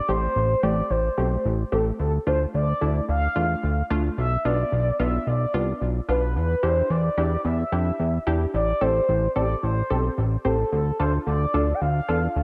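This cool, nocturnal synth-pop excerpt in A minor moves at 110 BPM in a straight 4/4. It opens at 0.0 s with a mellow, horn-like synth lead carrying the melody up front, its round, full-bodied tone shaped by a soft attack, vibrato and portamento. Almost at once a warbly, dusty pluck enters as accompaniment with lo-fi, decaying notes and a filter sweep, while a fat analog bass sits up front with a thick, saturated, wave-folded sawtooth edge. Chorus and dub echo coat the lead and the pluck, and a wet spring reverb with digital ambience lends the mix an echo-heavy, late-night haze. The harmony cycles through Am7, Dm, Bdim and Em7 before returning to Am7 and Dm, and the parts carry on until the clip is cut from the longer piece near 12.4 s.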